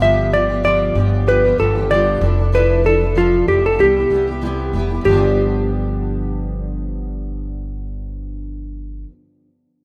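Acoustic pop with a heartfelt, sunny mood and a gentle swing, cut from a longer piece and heard as a rough home demo in a lightly reverberant studio space. A dark, clean hollow-body jazz guitar carries the picked melody up front, over a double-tracked, full-bodied jumbo steel-string acoustic guitar fingerpicking the accompaniment with audible finger squeak. A woody pizzicato upright bass sits up front underneath, all three playing from the start through about 9.0 seconds as the harmony moves from G7 through Cmaj7 and back to G7 at 5.1 seconds.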